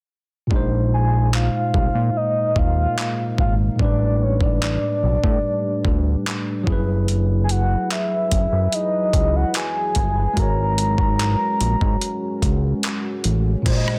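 A straight 4/4 groove from a dusty, sampler-style drum kit drives this dreamy, romantic contemporary R&B excerpt, its gritty, overdriven sound built on a thumpy kick with rim clicks, handclaps, hi-hat and crash, sitting up front beside a fat, saturated analog bass. A clean tine electric piano carries the accompaniment through suspended ninth chords, while a soft, round, octave-layered synth lead enters at 0.9 seconds with chorus, tremolo, vibrato and tape echo, and a deep, moody ambient pad joins at 2.1 seconds in the background with chorus and its own reverb. The mix is dry, dense and heavily limited.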